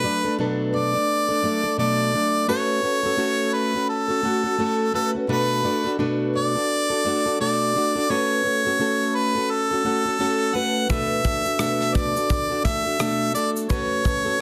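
A clear harmonica carries the melody up front with light vibrato in this wistful, reflective acoustic pop excerpt in B minor, moving at 86 BPM with a swung 16th-note feel over a gentle alternation of Bm7 and F#m/A. A full-bodied, fingerpicked jumbo steel-string guitar sits up front beneath it, while a deep, warm classical nylon-string guitar adds quiet arpeggios with audible finger squeak in the background, all bathed in plate reverb. At 10.9 s an airy, polished country drum kit joins with a punchy kick, rim click, shaker and a softly clipped snare, set within a moderate studio reverb and a dense, heavily limited modern master.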